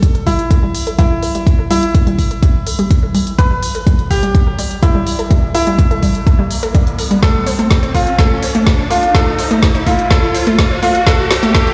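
Progressive house with a driving, emotional pull, this short excerpt is one continuous build-up in straight 4/4. A brilliant grand piano carries the melody in a narrow middle range through tape echo, while an analog pluck, round and detuned with a sawtooth edge, spins arpeggios under chorus, sidechain pumping and its own tape echo, a filter sweep running across it for the whole passage. A deep, up-front electronic kick anchors the groove, joined by a deep house kit of woody snare and smooth hi-hats, both set in a small room ambience. A riser enters at 1.8 s in the background, the harmony shifts from A5 to A minor at 7.2 s, and a drum fill runs from that point to the end. Everything sits in a lush hall reverb and sounds as if played on a big system in a bare stone room.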